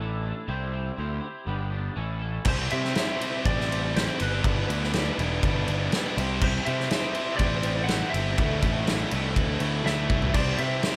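This fragment of quiet-loud alternative rock at 122 BPM in a straight 4/4 opens with a slightly broken-up, compressed lead guitar carrying the melody. A clean, scooped electric guitar plays arpeggios through chorus and delay, and an up-front fuzz bass with overdrive sits beneath them over chords moving from C through Gadd9 to A. At 2.4 seconds the piece turns loud and restless. A roomy acoustic kit with dark cymbals, a medium-tuned snare and a punchy kick enters there along with a lo-fi overdriven garage guitar in the background, and at 2.5 seconds a bright, high-gain distorted guitar joins; both guitars play riffs as the harmony moves through Cadd9, G6 and Dsus2. The twangy lead keeps its melody above this cathartic wall of sound, and a drum fill at 9.9 seconds leads back to C. The mix is dry, with little reverb, giving the heavy passage a raw feel.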